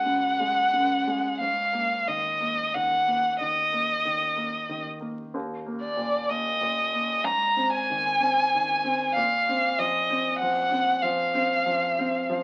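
A rich, close violin carries the melody up front, played by one bowed player with expressive vibrato and portamento, in a luminous, pastoral impressionist classical duo with a flexible rubato feel in 4/4. Beneath it, a clear, natural-sounding baby grand piano with short sustain accompanies in its lower and middle register, moving through suspended harmonies such as Gbsus2, Absus2 and Bbsus2. Moderate studio reverb and the crackle of a very old 78 rpm record frame this brief excerpt, cut from a longer piece.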